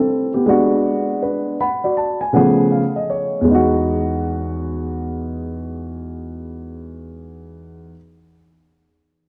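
This hip hop clip, cut from a longer piece, moves at a relaxed 80 BPM in 4/4 with a swung sixteenth-note feel, set in E major and carrying a smooth, cool mood. A dark concert grand piano carries the accompaniment throughout, spanning E2 to B5 with a mellow tone, deep bass and short sustain, sitting up front in the mix. The harmony passes from G#m7b5 to C#7b13 before settling on Emaj7 at 3.5 seconds, where the opening section gives way to the next. A piano fill runs from 1.2 to 3.5 seconds, adding motion over the first chord changes. The sound is coated in worn, warbling cassette tape character with drifting pitch, giving it a vintage feel. A moderate plate reverb with a 3.6-second decay surrounds the piano.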